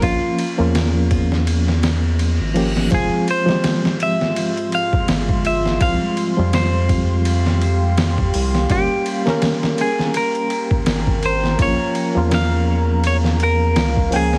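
Dark and cinematic, this trip hop excerpt moves at 83 BPM in 4/4 with a swung sixteenth-note feel, built on a Bbm, Fm, Csus4, Gdim cycle. A bright, clean semi-hollow electric guitar carries the melody through tape echo, while a barky, reedy electric piano accompanies with medium tremolo, harmonic tremolo and a gritty 12-bit sampler edge. Underneath, a round analog bass sits deep and mellow, and an overdriven, pitched-down sampler-style drum kit sits up front with a thumpy kick, medium-tuned snare, hi-hat and ride. The kick drops out briefly between 1.5 and 2.9 seconds, and an electronic reverse cymbal sounds from 2.0 seconds within that gap. From 3.9 seconds a moody, detuned ambient pad adds sustained chords with chorus and its own reverb. The whole mix has a heavily compressed radio quality with vinyl crackle and a light reverb.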